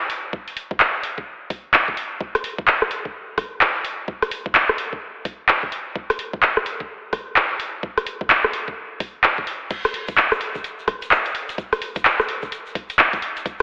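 A layered, up-front garage drum kit of crash cymbal, handclaps, hi-hat and rim click drives this skippy, late-night UK garage excerpt at 128 BPM in 4/4 with a 62% swing on the 16ths, joined at 0.3 seconds by a knocking, tape-warm electronic kick and at 9.7 seconds by a grainy, bright egg shaker in the background, all set in a lush hall reverb with a heavily compressed, telephone-like radio sound.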